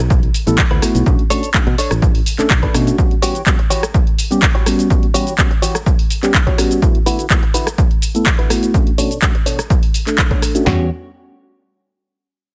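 Growly fingered electric bass and a layered house kit of cabasa, handclaps, hi-hat and rim clicks open this sensual, funky filtered disco house excerpt at 125 BPM in E dorian, soon joined by a punchy, tape-warm analog drum machine up front, a bright, twangy clean guitar riff in lush chorus and a phaser-tinted tine electric piano, while the bass, guitar, piano and house percussion pump against the sidechain under a long filter sweep, the bass dropping out at 2.9 seconds and returning at 10.7 seconds over dry, close-sounding D69, Bm9 and Em69 chords.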